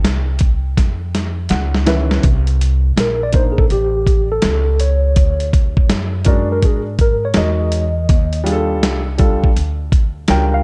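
Jazz-hop with a nocturnal, cool mood and a swung groove, built on a gritty, compressed sampler-style drum kit with a thumpy kick, a woody gut-string upright bass played pizzicato, and a mellow tine electric piano through an analog delay that takes a solo from 2.2 seconds, while a dark, intimate concert grand piano with audible action noise enters at 1.5 seconds alongside a drum fill, all cut from a longer piece with a dark, warm production.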